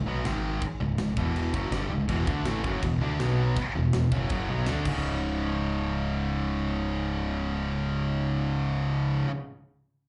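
A bright, high-gain guitar riff sits up front in this relentless, dark heavy metal fragment at 163 BPM in C# phrygian, underpinned by a growling, overdriven picked bass, joined at 2.1 seconds by a second distorted guitar carrying a slapback echo in the background, while a tight, polished, airy drum kit with bright crash and china cymbals drives the opening until a fill at 4.9 seconds, all captured as a live club gig through the venue's PA with a top end that rolls off around 10.7 kHz.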